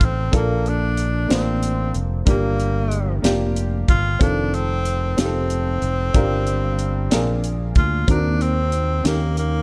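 From the first moment, a breathy, whispered tenor saxophone carries an intimate melody with vibrato and scooped notes over a woody, slightly detuned vintage upright piano, a punchy fingered electric bass up front and a tight funk drum kit with a high-tuned snare, giving this soulful, reverent slow gospel excerpt at 62 BPM in 6/8 and Bb major a roomy studio-reverb glow as the chords move from Bbmaj7 through Gm7 and F7 to Ebm6 and Eb7.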